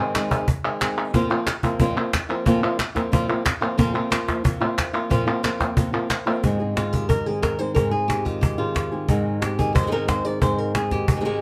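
A fingerpicked flamenco guitar carries the melody up front, ranging from F2 to D5 with a warm acoustic tone, in this dramatic, passionate flamenco excerpt cut from a longer piece. A second fingerpicked flamenco guitar plays stabs a little lower in the mix, with its finger squeak audible. The woody cajon, with faint snares and a small-room character, and the crisp, vintage, band-limited palmas hand claps sit up front at a brisk 181 BPM in straight 4/4. The harmony moves from Ab to Fsus4 and returns to Ab at 6.4 seconds, where the claps stop and a new section continues with the two guitars and cajon. Tuned to A4 = 436 Hz, the recording has close, detailed microphones and a moderate studio reverb.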